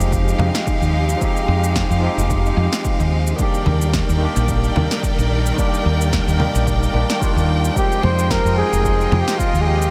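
A relaxed sunset chillout excerpt in F dorian at 110 BPM with a swung 16th feel opens on a barky, lightly overdriven tine electric piano with filter and delay, clear bowed studio strings holding sustained chords, a dark, round fretless bass up front, and punchy electronic cabasa, congas and snare joined by a layered kick, all moving from Fm9 to Ebmaj7 and back inside a dreamy, reverb-soaked mix before a mellow solo flugelhorn with delay takes the melody at 7.8 seconds.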